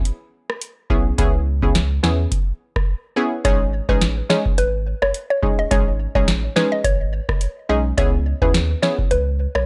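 A booming analog drum machine opens this bouncy, tough dancehall excerpt at 106 BPM, its deep kick, tonal snare, rim click and metallic hats sitting up front with a light 16th-note swing. A warm, round sub bass enters at 0.9 seconds alongside a bright, detuned analog pluck whose sawtooth tone carries a noise layer, a filter sweep and chorus as it supplies the accompaniment. From 3.4 seconds a woody, mallet-like FM pluck takes the melody in a narrow upper range, its mellow, percussive notes treated with chorus, phaser and tape echo. The harmony moves from C#m7 to G#sus4 and back to C#m7 at 8.0 seconds. The sound is dry and gritty, with transformer saturation and a digital ambience, and the passage is cut from a longer piece.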